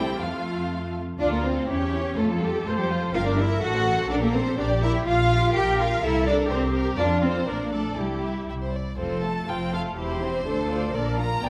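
A wet recital-hall reverb surrounds this brief cut from a quick, cheerful classical-period movement for string orchestra, moving at 123 BPM in a straight 2/4 and settling into F major from 5.1 s. Close, expressive first violins carry the melody over a more distant second violin line and smooth, even violas. Rich vibrato cellos and a clear, up-front double bass section anchor the bass throughout the 11.5 seconds, as the harmony passes through Gm7 and C7 before returning to F.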